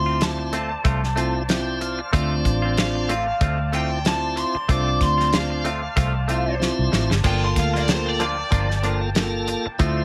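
A lightly reverberant, up-front mix opens this brooding, soulful excerpt of straight-eighth soul blues at 94 BPM in D minor, moving from Dm7 to Gm7 at 7.2 seconds. A raw, overdriven garage guitar carries the melody until 8.8 seconds over a piping tonewheel organ with slow rotary speaker, which adds a fill at 1.2 seconds, while a roomy horn section holds distant, vibrato-tinged chords in the background. A foam-muted, round fingered bass and a fat-snared soul drum kit with dark cymbals anchor the groove alongside twangy, direct-recorded clean guitar stabs in spring reverb, and the drums break into a fill at 6.6 seconds.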